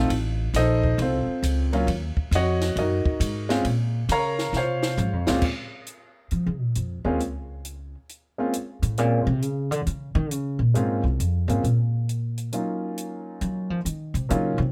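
A moody, swinging jazz piano trio excerpt in Bb minor at 135 BPM, cut from a longer piece, with a swing on the eighth notes in 4/4. The concert grand piano carries the melody and takes a solo over the opening 5.4 seconds, its intimate, up-front tone showing deep bass and audible action noise under a plate reverb, moving through F7, Ebm9 and Bbmadd9. The compact cocktail drum kit sits lower in the mix, with dark cymbals, a high-tuned snare and a punchy kick, and it plays a fill from 4.5 seconds that leads into the second half. From 5.4 seconds the pizzicato upright bass takes a solo, its woody, growly steel-string sound standing up front over Bbm and later Ebm9. The piano and drums sound natural, the kit set in a tight booth, and the whole recording carries a light reverb.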